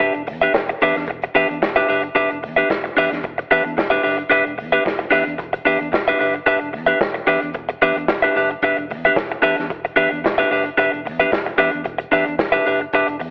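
A clean, picked electric guitar sits up front from the first second, compressed and warm against a steady Em7 in this joyful, danceable disco excerpt at 111 BPM, joined throughout by a round, dark fingered electric bass tucked low in the mix and a vintage acoustic drum kit with a punchy kick, a medium-tuned snare, hi-hat, gated reverb and a rolled-off top, all heard through a telephone-like sound with light reverb and small room ambience across this 13.3-second cut from a longer piece.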